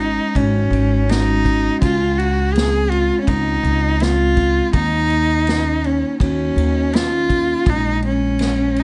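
A bowed cello carries the melody from the first moment, smooth and even with gentle vibrato, played close and up front by a single player. Beside it, a mellow vibraphone struck with soft mallets, motor off, rings out dark, metallic arpeggios, while a woody pizzicato upright bass with steel strings sits forward in the mix. At 0.4 seconds an acoustic drum kit played with bundle sticks joins from a distance in a roomy studio space, with a tight kick, a medium-tuned snare and dark ride cymbal. This reflective, intimate folk-pop ballad moves at 82 BPM in a straight 4/4, set in Eb dorian, with the harmony passing through Ab7sus4, Dbmaj7, Ebm7 and Bbm7. Light reverb and a soft, rounded top end give the short excerpt a warm, hushed glow.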